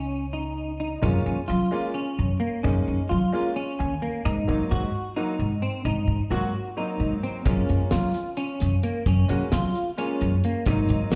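An uneven 7/8 pulse drives this bright progressive instrumental, cut from a longer piece and heard live through a club PA, where a clean, compressed semi-hollow guitar plays up-front arpeggios with chorus, delay and slapback echo over woody pizzicato upright bass, an intimate grand piano with audible action noise enters at 1.0 seconds and adds a fill around 3.6 seconds, and a cloth-damped, thuddy drum kit with a fat snare and a grainy background tube shaker enter together at 7.5 seconds as the chords move from Dbsus2 through Gbmaj7 and Ab7.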